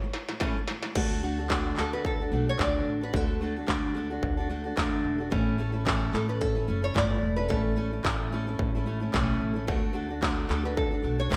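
Heartfelt and carefree, this short acoustic pop cut in D major at 110 BPM with a light sixteenth-note swing sets a small, fingerpicked nylon-string guitar melody, bathed in lush chorus and delay, over a fingerpicked steel-string acoustic guitar with a warm, fresh-stringed tone, while an up-front industrial drum kit with a distorted kick, clanging snare, handclaps, crash cymbal and gated reverb opens with a fill before a woody pizzicato upright bass enters at 1.0 seconds, all within a bright 1980s-style digital production with moderate plate reverb.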